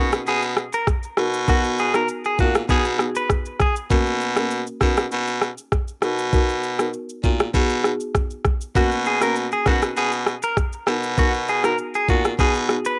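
A home cassette recording with light reverb gives this short afrobeats excerpt a soft, homespun haze, joyful and romantic in mood with a straight 4/4 groove. Up front, an electronic, produced afro-pop drum kit sets the pulse with a knocking kick, rim clicks and shaker. A breathy baritone saxophone carries the bass line, its tone raspy and gritty with a light vibrato and a pop-style presence that sits forward in the mix. Above it, a folk marimba played with medium mallets on hardwood bars adds dry, woody, rustic accompaniment with a boxy small-room character. A clean, direct-recorded electric guitar plays a bright, twangy, picked melody colored by spring reverb and tape, sounding from the start to 3.7 seconds and returning at 8.8 seconds to close the clip at 13.0 seconds. The harmony circles through major-seventh, minor-seventh and major chords over a steady B in the bass, lending the passage a joyful, romantic glow.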